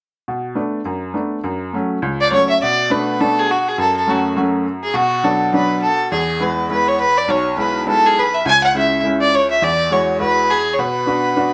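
A single bowed fiddle carries the tune up front, its tone biting, nasal and earthy with a smooth top, and a slapback echo follows its line. This is a spirited, dark and lively slice of Celtic folk in a swung 4/4, cut from a longer piece. A bright upright piano opens the recording at 0.3 s alone, woody and slightly detuned, with audible action noise and long sustain giving it an intimate, close presence beneath the melody. The fiddle joins at 2.2 s, and the two play together until the recording breaks off at 11.5 s. The harmony moves from Bm7 and F#m through E and C#m to an Eadd9 before settling back on Bm, all set in a moderate studio reverb with a gently rounded upper end.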